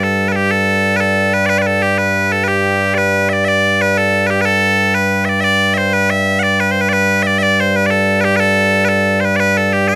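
Loud, piercing bagpipes play solo and up front through this bright, cheerful Celtic folk excerpt in a straight 6/8, their continuous tone caught by close, detailed microphones in a dry room as the opening phrase sounds and then repeats from 3.5 seconds.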